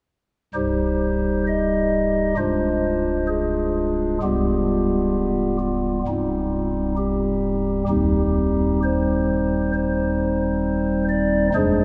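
A pipe organ on a stopped flute register plays alone from 0.5 to 11.8 seconds, its soft, hollow tone touched with a gentle chiff and set up front in baroque voicing. This dark, solemn classical chorale moves with a free, rubato feel through minor-key harmony that sits over C in the bass before shifting to Eb, ranging from C1 up to Eb5. A long cathedral reverb of 5.4 seconds surrounds the mellow flute stops, and the passage is cut from a longer piece.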